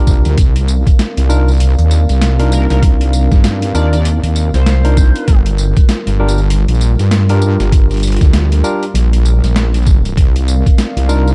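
A swung 98 BPM glitch hop groove in 4/4 struts with swaggering, playful energy as a thumpy, overdriven electronic kick and a gritty, pitched-down boom bap kit with high-tuned snare, hi-hat and tambourine join a heavy, saturated wobble bass up front, while a barky tine electric piano stabs through delay, a deep, wave-folded analog pad holds moody Cm11 and Gm7 chords in the background, and an edgy, tearing sync lead slips in from 2.5 to 5.4 seconds, all in a dark production dusted with vinyl crackle in this cut from a longer piece.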